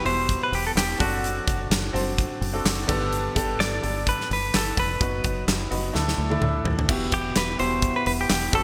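A bright 1980s-style digital production bathed in lush hall reverb frames this bittersweet, dramatic piano-driven pop excerpt in E minor at 127 BPM with a light sixteenth-note swing, where a twangy, up-front clean electric guitar carries the melody through spring reverb over clear grand piano accompaniment with subtle chorus, a round, foam-muted dub bass, and a huge arena drum kit with punchy kick and bright cymbals that plays a fill from 5.9 to 6.9 seconds, as the harmony moves from Emadd9 through D7/F#, Gadd9, B/F# and Dsus2 before returning to Emadd9.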